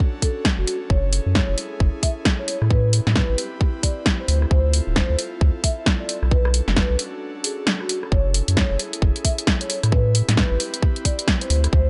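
A thick, saturated sub bass sits up front in this moody, late-night two-step UK garage cut. It enters at 0.6 seconds, holding deep, sustained notes with a fast attack beneath a 133 BPM groove swung at 61% on the sixteenths. A tight, layered electronic kick anchors the beat alongside a punchy analog drum machine, whose hi-hat, rim click and snare carry a tape-tinged, small-room character. Soft-mallet vibraphone carries the melody in a mellow, dark, ringing tone with medium motor vibrato and a delay trailing its notes. Behind it, a quieter airy pad with a breathy noise layer holds sustained chords under chorus and sidechain pumping, moving through rootless Bm9, F#m9, Am9 and Dm9 harmony. A short break at 7.2 seconds interrupts the flow before the chords cycle back, and the dry, close mix keeps the top end rounded in this excerpt from a longer piece.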